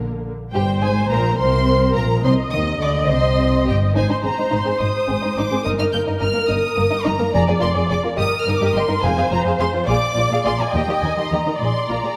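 A quick classical-period movement for string orchestra in 6/8, this cheerful, graceful fragment of a longer piece has a clear violin section singing the high melody with lush vibrato from 0.5 s, over a smooth second violin line with light vibrato, a rich, intense viola accompaniment, a chamber cello section with expressive portamento and a soft-attacked, warm double bass section, the ensemble set in the generous reverb of a scoring stage.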